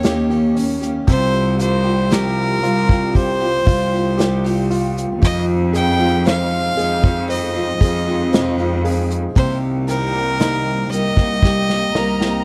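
A slow, straight 4/4 pulse at 58 BPM from an up-front acoustic drum kit, played with bundle sticks and ending in a fill at 11.4 seconds, carries this emotional, longing pop ballad fragment, where a rich, biting fiddle with light vibrato and slapback echo sings the melody over a polished baby grand piano accompaniment, a picked parlour steel-string guitar arpeggiating in the background with its own slapback echo, and a dark, veiled con sordino cello section holding the bass through Eb7, Csus4, Fm7 and Cm7, before a lush, distant violin section slides in at 11.9 seconds, all in a dry, close 1970s-style studio sound.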